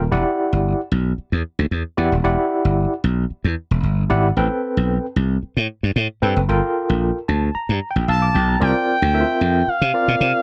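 A straight 4/4 pulse at 113 BPM sets up a danceable, slick passage of early-eighties boogie funk in E minor, cut from a longer piece. A growly, punchy slap bass sits up front throughout. Beside it, an overdriven tine electric piano runs through a combo amp, its barky, gritty tone shimmering with fast tremolo as it voices Em9, Am9 and Gm9, then breaks into a fill at 7.0 s. At 8.1 s an expressive sawtooth lead enters, smooth and mellow, gliding with portamento and vibrato and coloured by chorus and slapback echo. The harmony shifts to C9sus4 at 8.6 s, and light reverb gives the whole mix a polished finish.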